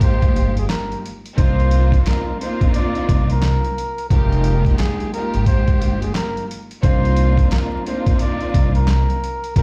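A moody, gritty boom-bap hip-hop fragment opens with a veiled, breathy bucket-muted trumpet carrying a jazz-style solo line with scooped notes and slapback echo, over a bowed studio string section with expressive vibrato and portamento and an up-front, pitched-down sampler-style kit of thumpy kick, snare, hi-hat and handclaps. A woody pizzicato upright bass on gut strings joins at 0.4 seconds and very quiet finger snaps at 0.7 seconds, all with a swung sixteenth-note feel as the harmony moves between Fm11 and Cm11. Vinyl crackle and the sense of a big sound system playing in a bare room give the piece a dusty, lived-in character.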